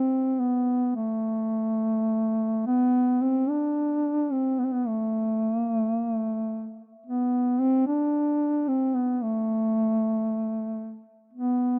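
A dark, up-front solo duduk with a smooth top carries this mournful, longing Caucasian folk lament in A minor from 0.0 to 11.8 seconds, its vibrato and scooped notes drifting in a slow rubato around 51-57 BPM within the small-room ambience of a rough home demo, in a fragment cut from a longer piece.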